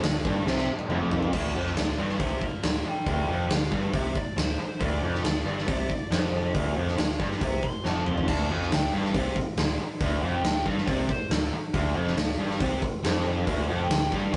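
A huge, punchy arena drum kit sits up front in this menacing, heavy hard rock excerpt in D minor at 138 BPM, with fills around 7.8 seconds, while a tight, bright, distorted guitar riff and a growly, overdriven picked bass drive alongside, backed by a very quiet compressed distorted guitar and a warm, double-tracked sludgy guitar that drops away after the opening and returns at 8.3 seconds. From 1.6 seconds a dark, smooth overdriven lead guitar carries the melody in the background. The rough rehearsal-room sound has tube saturation, moderate reverb and a top end that stops at 10.7 kHz.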